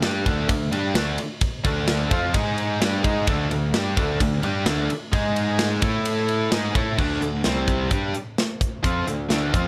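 A straight 4/4 pulse at 129 BPM drives this energetic, swaggering hard rock excerpt, where a bright overdriven guitar sits in the background beneath a second tightly distorted picked guitar riffing on power chords like D5, G#5 and A5, a growly fuzz-toned picked bass pushes up front, and an acoustic metal drum kit with a tight kick, medium-tuned snare, hi-hat, ride and crash cymbals sounds warm with a rolled-off top, all set in a small room reverb before the riff shifts to a new section at 7.0 seconds, turning through C5 and back to D5.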